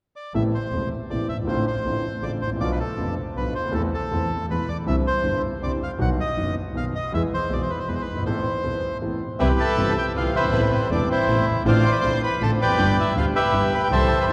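A rubato 3/4 pulse at 159 BPM drives this dramatic, sultry tango excerpt in A minor, where a reedy, up-front bandoneon carries the melody over an open, long-sustaining concert grand piano with deep bass and an earthy, distant bowed double bass, until at 9.4 seconds the harmony turns to C major, a background violin adds an expressive second line with vibrato and portamento, and a very quiet, clear chamber string section plays bowed stabs, the whole performance heard inside the wet reverb of a church or concert hall.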